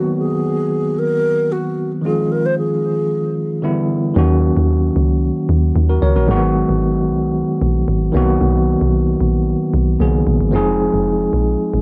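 A lightly reverberant home cassette recording captures this deep, late-night amapiano passage, cut from a longer piece, at 113 BPM in Eb minor. An airy, expressive alto flute with a straight, tongued tone and tape echo carries the melody only until 3.6 seconds, over a clean tine electric piano heard through its built-in speakers, playing up front throughout. At 4.2 seconds the drop arrives with a dark, round log drum bass: percussive, fast-attacking and decaying, with a noise layer and tube saturation, as the chords move through Ebm7, Abm7, Bmaj7 and Fm7.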